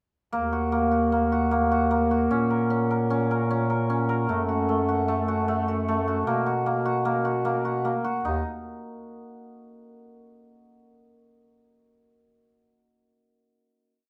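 A hammered cimbalom and a bass clarinet begin together at 0.3 seconds in this short, complete piece of contemporary chamber music, set in an uneven five-beat metre with a straight feel. The cimbalom spins a shimmering, ringing ostinato of arpeggios in its middle register, sitting up front in the mix. Beneath it, the bass clarinet is also up front, holding sustained bass notes with a soft attack, light vibrato and a jazz-inflected touch as it carries the low line. Over a brief cycle of four chords the mood stays restless and pensive, and both parts stop at 8.4 seconds. The close, detailed recording catches each stroke of the hammers in light reverb, and the piece ends on a final note from 8.2 seconds.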